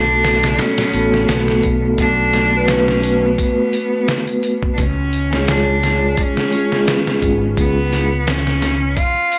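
A dry, gritty hardware recording with transformer saturation and digital ambience frames this dark, smoky trip hop excerpt, which moves from Bm7 to C# at 4.8 seconds. A rich, bowed cello carries the melody with focused vibrato and dub echo, while a metallic, ringing vibraphone played with medium mallets accompanies with slow motor vibrato, harmonic tremolo and tape echo until 8.1 seconds. Underneath, an overdriven, punchy fingered electric bass with tube saturation plays alongside a compressed, pitched-down sampler-style drum kit of thumpy kick, medium-tuned snare and hi-hat, which enters at 0.2 seconds.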